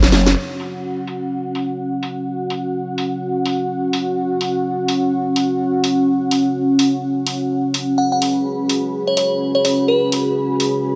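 A glassy, crystalline FM synth bell rings out a brief bright melody from 8.0 to 10.0 seconds with chorus and dub echo over an aggressive, gritty bass house groove at 126 BPM, where a swung garage drum kit with a cracking snare, filtered hats, cabasa and crash opens on a short fill, a detuned sawtooth analog pad holds moody sustained chords with chorus and 12-bit sampler grit, and a deep unison ambient pad drifts in at 2.9 seconds, all set in a lush hall reverb in this excerpt from a longer piece.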